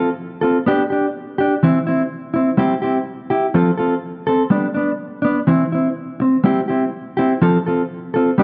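A mellow electric guitar plays alone throughout this short highlife passage, its clean, dark, fingered tone compressed and placed up front. The sunny, danceable phrase moves in a straight 4/4 through F, G, C/E and C, with a fresh section arriving at 2.6 seconds. A moderate echo-chamber reverb lends the guitar a roomy glow, and the clip breaks off from a longer piece at 8.4 seconds.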